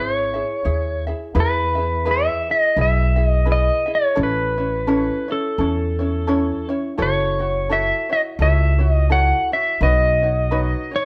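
A moderate stone-room reverb surrounds a small band playing live together in one room, in this short cut from a longer Hawaiian piece. The mood is languid and dreamy, moving at a relaxed 85 BPM in 4/4 with a gentle swing on the eighth notes, in E major. Up front, an electric pedal steel guitar carries the melody with a bright, clean, twangy tone, played with fingerpicks and slide, compressed and shaped by volume swells. An acoustic ukulele fingerpicks a mellow, light accompaniment beneath it, while a pizzicato upright bass on steel strings, also up front, gives a woody low end until it stops at 10.7 seconds. The harmony opens on C#m, settles on E at 1.4 seconds, and passes through A and F#m7 before ending on Badd9.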